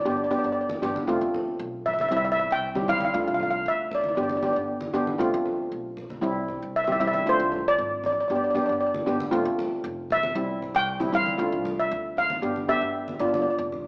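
A dark, smooth lead steel pan with a shimmering metallic ring opens this bouncy, festive calypso excerpt at 116 BPM in C major, carrying the melody up front over mellow, soft cello pans that voice a repeating G, F6, C, Dm7 cycle before landing on G7 at 12.4 seconds. Beneath them, a growly, woody pizzicato upright bass on steel strings sits low in the mix, while low-tuned, thick-skinned congas play distantly in the background. A wet recital-hall reverb and a small-speaker sound colour the recording, which is tuned slightly below standard pitch.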